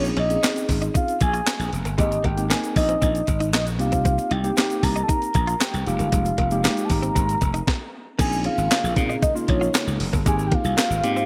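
A thumpy, up-front 12-bit drum machine with gated reverb on its kick, snare, handclaps, hi-hat and crash drives this slick, funky slice of early-eighties boogie funk, beside a growly, punchy slap bass and a grainy tube shaker in the background. A dark, round, octave-layered synth lead with chorus, tremolo and vibrato carries the melody over a worn, slightly out-of-tune tine electric piano and a very quiet, compressed clean guitar riff, moving through minor-eleventh and major-ninth chords. After a brief stop at 7.7 seconds, a shimmering vintage string machine enters at 8.2 seconds with soft sustained violin chords, all within a bright, lightly reverberant digital production.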